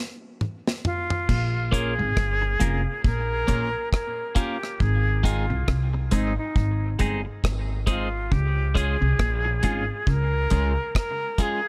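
A studio ambience frames this short dub reggae cut, a hypnotic, meditative groove at 68 BPM in 4/4 with a swung sixteenth feel, set in Bb dorian. A deep reggae drum kit opens with a fill at 0.4 seconds, its tight kick, medium-tuned snare, rim click, hi-hat, toms and crash cymbal sitting up front. At 1.3 seconds the band settles onto Bbm, Ab and Db: a woody pizzicato upright bass with steel strings anchors the low end, while a clean electric guitar plays a compressed, twangy, scooped riff in its low register. A second clean guitar, dark and very quiet, adds fingered accompaniment colored by phaser and dub echo. Above it all, a silver concert flute carries the expressive melody with a pure tone, crisp attack and vibrato, heard at a distance through dub echo.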